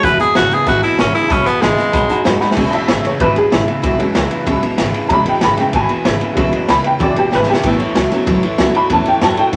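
Upbeat and retro, this straight 190 BPM rockabilly cut in E major opens with a raspy, forceful tenor saxophone melody up front that stops at 2.2 seconds, while the detuned, jangly honky-tonk upright piano plays a fill from 1.9 seconds and then solos from 2.6 seconds onward over a twangy electric guitar riff with warbly pitch drift, a bright picked steel-string acoustic guitar in the background, woody pizzicato upright bass and a raw garage drum kit with a punchy kick and a gritty, rolled-off top, the band sitting in a wet small-room reverb.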